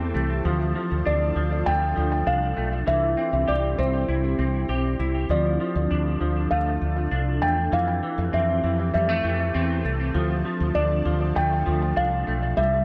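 Drenched in a wet spring reverb and echo-heavy ambience, this hazy, melancholic dream pop fragment sets a soft, intimate felt-muted upright piano melody, with audible action noise and tape echo, over clean, picked arpeggios from a semi-hollow electric guitar, an ethereal, detuned pad holding slow-attack chords, and a round, up-front fretless bass with lush chorus, moving through Dm, C and Fmaj7.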